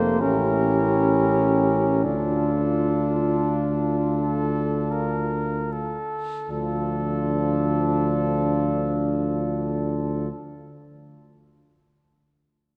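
A tuba sits up front in this solemn, melancholic brass band passage, its bass line carrying a light vibrato and a warm tone. Above it, a close-miked solo cornet sings the hymn-like melody, while a clear, close-miked solo trombone supplies accompaniment at the same prominence as the tuba. A distant French horn section holds a second line in the background, and a mellow, tight trombone section adds very quiet accompaniment from further back in the room. The playing is rubato in a slow 6/8 lilt, easing and slowing through the opening section before a second section begins at 6.5 seconds, with the harmony settling from a tense A7b9 onto D minor. A wet church reverb surrounds the ensemble, lending the short excerpt, cut from a longer piece, a spacious, devotional atmosphere.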